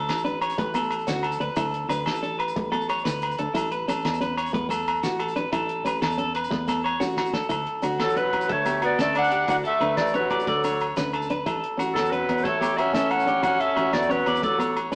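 A raspy, up-front clarinet carries the melody from 8.0 s with a gritty tenor saxophone beneath it in this danceable highlife band excerpt at 121 BPM in 12/8, riding over slightly broken-up electric guitar arpeggios, a growly, punchy fingered bass, a dry 70s drum kit with a fat snare and a fill at 6.5 s, ringing agogo bells, dark fingerpicked steel-string acoustic guitar and grainy maracas in the background, all set in a live stone-room reverb with a small-speaker sound.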